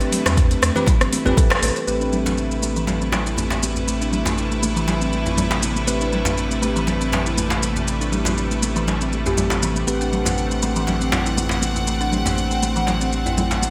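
Afro house with a warm, earthy mood, built on woody kalimba arpeggios and biting, bright string chords pumping against a round sine sub bass, with bell-like tine electric piano stabs in the background, metallic hi-hats, rim clicks and shaker from the drum kit, thin high-tuned congas, hard-handed djembe, and a deep, up-front electronic kick that plays only from 0.4 to 1.5 seconds, before filter sweeps begin on the kalimba and electric piano at 1.9 seconds, all in a bright 1980s-style digital mix with plate reverb.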